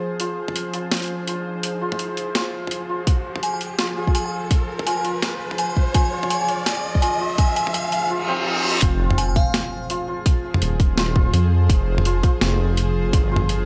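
Lightly reverberant and spacious, this heavy half-time drum and bass excerpt in F minor moves at 167 BPM with a swung feel. A nasal, string-like bowed drone pumps under a shimmering hammered santur whose arpeggios pass through a filter sweep, while a gritty, pitched-down sampler kit with a high-tuned snare plays throughout, a hard-clipped electronic kick joins at 3.1 seconds, and a crystalline, chorused synth bell carries a brief melody. A riser and reverse cymbal build toward the drop at 8.8 seconds, where an impact lands and a rumbling, saturated, detuned saw bass enters up front.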